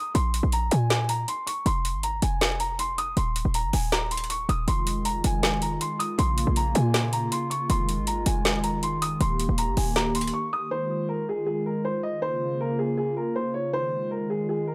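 A dry, gritty recording with transformer saturation carries this brooding, menacing half-time trap excerpt at 159 BPM in F minor, where a dark, boxy grand piano melody runs throughout, a punchy, tight 808-style bass and a trap kit with woody snare and metallic hats drive until a break at 10.3 seconds, and a hollow, flute-like pad with chorus enters at 4.7 seconds to hold sustained chords through the close.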